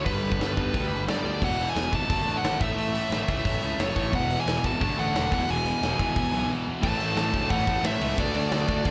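A straight 4/4 pulse at 177 BPM drives this rowdy, rebellious punk rock clip, cut from a longer piece and heard as a live gig through a club PA. Up front, a nasal lead guitar with a parked wah carries the melody between B4 and A5, overdriven with slapback echo and digital delay. Behind it, a cranked stack guitar and an overdriven semi-hollow guitar with a hollow-body bite play the picked riff with slapback echo. A sludgy, double-tracked distorted guitar joins them at 4.1 seconds. A growly, fuzzed picked bass punches underneath, and a big acoustic rock kit with bright cymbals and a punchy kick sits up front. After a short break at 6.5 seconds, the band shifts from the G, E and D/F# changes to A5 and D5 power chords.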